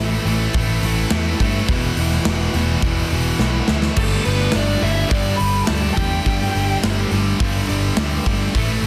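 Heavy and menacing, this brief hard rock excerpt churns on picked riffs from a distorted, scooped high-gain guitar and an overdriven cranked stack guitar set back in the mix, over a growly, punchy bass and an up-front big rock drum kit with bright cymbals, while a gritty, overdriven tonewheel organ with slow rotary speaker holds very quiet sustained chords, and after a drum fill a warm, biting lead guitar melody with a very quiet second line enters alongside a double-tracked crunchy guitar riff at 4.0 seconds, all in a dense, heavily limited small-room mix.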